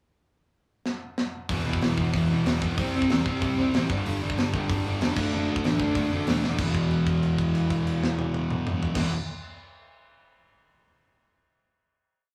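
Aggressive, angry punk rock at 188 BPM in E minor, where a tight, up-front metal drum kit opens with a fill before three guitars (a bright distorted one and a hollow-body overdriven one driving eighth-note power chords, and a double-tracked thick fuzz guitar ringing chords) enter together with a punchy fuzz bass at 1.5 seconds for a riff moving through E5, C5, G5 and D/F#, all ending on a held E5 chord from 6.6 seconds in a large, live-sounding studio room.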